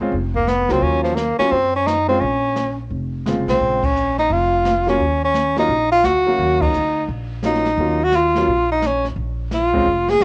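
Small-group swing and bop jazz with a cool, swinging mood, this brief excerpt cut from a longer piece centres on a breathy tenor saxophone carrying the melody up front, with vibrato and scooped notes, over a natural-sounding grand piano, a woody, thumpy pizzicato upright bass on gut strings, and a dark brush kit with boomy kick and a rolled-off top. The harmony moves between Bbm7 and Ebm7 before landing on Bb5, and the band hits accents together at 3.8 and 6.6 seconds. A small room's moderate reverb and the homely grain of cassette tape, heard on the saxophone and drums, give the recording a cosy, intimate character.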